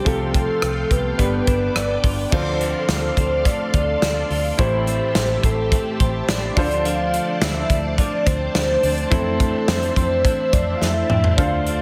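A big, reverberant arena sound frames this glossy, uplifting 1980s-style pop fragment at 106 BPM, where a velvety synth lead with chorus and tremolo carries the melody over a natural, punchy drum kit, a dark, round muted electric bass, shimmering, warbling string-machine violins, a twangy, compressed twelve-string electric guitar riff and a polished concert grand piano in the background, with a drum fill at 10.8 seconds.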